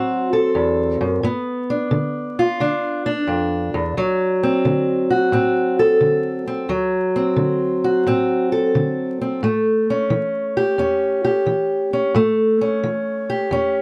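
A fingerpicked steel-string acoustic guitar carries this short blues excerpt alone, its parlour-sized body giving a boxy, warm tone that sits up front in the mix. The mood is laid-back and gritty, moving at 88 BPM in 4/4 with a swung eighth-note feel in D mixolydian. The guitar spans from D2 up to A4, opening on a rootless D7 before shifting to G7 at 1.2 seconds, returning to D7, then reaching A7 at 9.4 seconds. The sound is dry and close, like a 1970s studio recording, with a modest booth ambience around the instrument and a layer of vinyl crackle adding age and grain. Cut from a longer piece, the passage runs just under 14 seconds.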